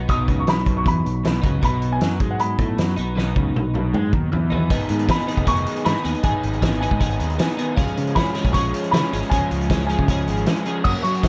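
Indie rock at 156 BPM in B major, jangly and wistful, where a crunchy overdriven guitar and a bright, compressed twelve-string electric with analog chorus and tape echo play riffs over picked electric bass and a loose, roomy drum kit with a fat snare and dark cymbals, while a woody, boxy upright piano carries the melody and, from 4.7 seconds after a drum fill, a tinkling FM synth bell and a buzzy, very quiet combo organ join as the chords move from G#m to C#.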